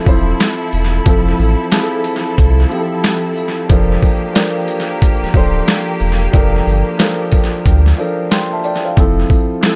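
An echo-heavy mix with light reverb and a rolled-off top opens this soulful, warm boom-bap hip-hop excerpt in F major, moving at 91 BPM with a loping swing on the sixteenths. A dark, boxy grand piano sits up front from the start, its long sustain colored by cassette tape filtering, while a bowed studio string section holds soft, intimate sustained chords beneath it with gentle vibrato until about 8.9 seconds. A deep, round sine sub bass anchors the low end, mellow but immediate, as the gritty sampler-style drum kit punches through with a thumpy kick, a high-tuned snare, hi-hat and shaker, all compressed, pitched down and trailed by tape echo. Far back in the mix, a jingly tambourine adds a bright, live-room shimmer with its own tape echo. The harmony rests on Fmaj7 before shifting to Gm7 at 3.7 seconds and returning to Fmaj7 at 9.0 seconds.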